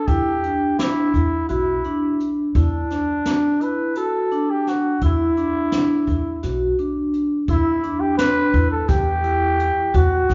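A reverberant recital-hall sound with softened highs frames this brooding, intricate progressive instrumental excerpt in 7/8 at 170 BPM in E minor, where a raspy, growling trumpet carries the melody up front over metallic vibraphone arpeggios with slow motor vibrato, woody pizzicato upright bass and a distant brush drum kit with a high-tuned snare and punchy kick, moving from Em7 through D/E and E5 before a new section arrives at 7.5 seconds.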